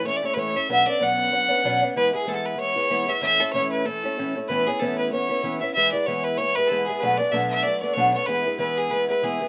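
Celtic folk reel in A major, bright and rollicking at 190 BPM with a light swing on the eighth notes, tuned slightly below standard pitch and cut from a longer piece. A single bowed fiddle carries the melody up front, clear and intense with a light vibrato, while a fingerpicked twelve-string acoustic guitar plays accompaniment up front alongside it, its dark, boxy tone shimmering with octave-doubled strings. Both play throughout, and the same strain is heard twice, at 0.0 and 4.5 seconds, moving through A, E and B minor harmonies in a moderate studio reverb.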